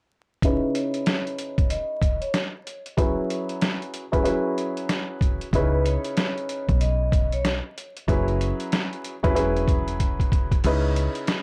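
Boom-bap hip-hop at 94 BPM in a moody, dark C# minor groove with swung 16ths, built on a pitched-down, compressed sampler-style drum kit with a thumpy kick and up-front mellow vintage grand piano chords run through cassette tape, while a ringing, metallic vibraphone with analog delay carries a brief melody, a round, punchy dub bass enters at 5.5 seconds, and a filter sweep, a drum fill at 10.0 seconds and vinyl crackle color the dry, gritty sound of this cut from a longer piece.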